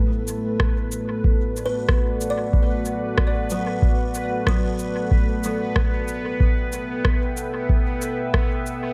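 Spacious and deep, this ambient dub excerpt at 93 BPM rests on a dark, detuned sawtooth pad holding a Bm7 chord with chorus and reverb, joined by a bubbling, resonant stepped-filter texture, an overdriven electronic cabasa and rim click with dub echo, an up-front, tape-warm electronic kick, and a buzzing, woody kalimba whose tape-echoed arpeggios run from 1.7 to 6.1 seconds, all set in a digital ambience.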